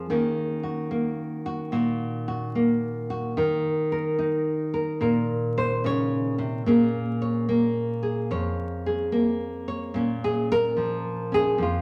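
A lone nylon-string guitar opens the recording, playing solo jazz at a relaxed 73 BPM in 4/4 with a swung eighth-note feel. The mood is late-night and smoky, carried by the guitar's full-bodied, deep classical tone, fingerpicked and placed up front in the mix. Its range stretches from F2 up to Db5, and the harmony moves from Ebm7 to Bbm7 at 6.6 seconds. A large studio reverb gives the sound a long, wet tail, while a layer of vinyl crackle adds a dusty patina. This short passage, cut from a longer piece, lasts just under 12 seconds.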